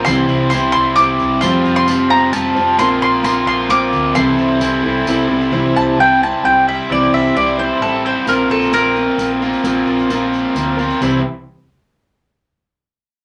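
Jangly and warm, this folk rock and heartland rock excerpt moves at 131 BPM in a straight 3/4 in C mixolydian, with a round, double-strung mandolin carrying the melody up front and taking a solo marked from 5.5 to 11.0 seconds, though the instrument itself stops at 9.3 seconds. Beneath it, a full-bodied jumbo steel-string acoustic guitar plays picked accompaniment beside a bright, crunchy, double-tracked overdriven electric guitar riff, while a dark, amped hollow-body short-scale bass sits low in the mix. A jingly tambourine sits in the background, dropping out between 5.5 and 8.3 seconds, all within a wet club reverb over chords moving from C through Fsus2, Bbsus2 and C6.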